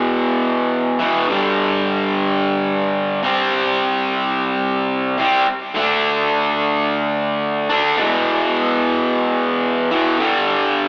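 A straight 4/4 rock pulse drives this brooding, cathartic excerpt cut from a longer piece, where a lone distorted electric guitar, bright, picked, double-tracked and compressed, sits up front with digital delay as it moves through power chords from E5 to G5, C5 and D5, heard like a live gig through the venue's PA with club reverb, a long plate tail and a thin AM-radio tone.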